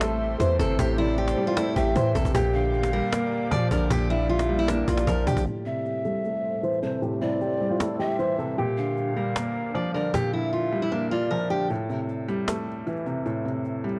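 A gritty, dry cassette-tape sound in a small room frames this brooding, dark trap-flavored hip hop excerpt at 154 BPM in half-time, where an up-front, full-bodied fingerpicked steel-string acoustic guitar with audible finger squeak carries the melody over a soft, felt-muted upright piano, breathy cane pan pipes with analog delay add a second line, a detuned airy pad with chorus and phaser sits in the background, a deep, boomy 808-style bass with saturation drops out at 5.5 seconds as a filter sweep begins, and a snappy, close cajon plays on until a break at 11.7 seconds leaves only the cajon and piano.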